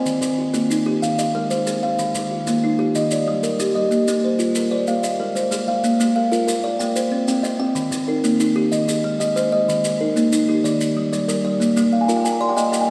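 An up-front kalimba, woody and hollow-bodied, plays rippling fingertip-plucked arpeggios alongside a second, softer and airier kalimba in a southern African traditional, mbira-style interlocking cycle at 125 BPM in a straight 12/8, in Bb mixolydian. Grainy, saturated maracas sit further back, while a church reverb lets the mellow, ringing tones bloom into a warm space. In this section cut from a longer piece, chords move between Eb, Ab, Gm, Bb and Cm, and a kalimba fill arrives at 11.8 seconds.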